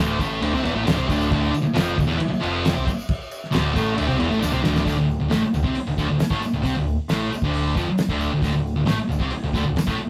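Raw and menacing, this garage rock excerpt drives along at 135 BPM in a straight 4/4, centred on D minor and cut from a longer piece. A thick, double-tracked fuzz guitar sits up front playing the riff, its distorted, bright tone ranging from D2 to C4, while a growling picked electric bass adds overdriven grit down low from D1 to C2. A cloth-damped drum kit gives a dry, thuddy foundation with a fat snare, tight kick, dark cymbals including hi-hat and crash, and a rolled-off top end. A jingly tambourine rings in the background as if in a small room. Harmony moves from D minor to a bare D5 at 4.9 seconds, where the music shifts into a new section after a drum fill starting at 4.4 seconds. The whole take has the rough character of a rehearsal-room recording, with moderate studio reverb and a layer of saturation.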